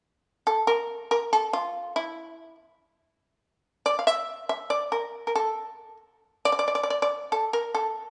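Japanese traditional chamber music in a still, solitary mood: a lone shamisen plays freely in rubato around 70 BPM in 2/4, entering at 0.5 seconds and sounding until 8.1 seconds. The fretless, plectrum-plucked strings ring bright and percussive with a buzzing edge, sitting up front within the range of E4 to F5. A moderate reverb, like a scoring stage, gives the notes a 1.6-second tail in this short extract from a longer piece.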